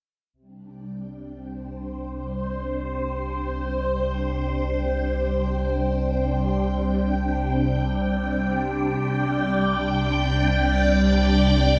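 At 0.3 seconds a phased string machine and a warm sub bass fade in together, opening this luminous, expansive passage of ambient, sequencer-driven space music cut from a longer piece. The string machine carries sustained chords from C3 to G5, its swirling, vintage sawtooth tone shaped by a slow attack, long release, ensemble chorus and phaser, and it sits bright and up front. Beneath it, the sub bass holds a deep, round sine tone on C2, mellow and sustained. The harmony rests on a single Csus2 chord in free time, tuned to A4 = 439 Hz. A wet echo chamber reverb with a 2.2-second decay surrounds the sound as both parts keep fading in until 11.8 seconds.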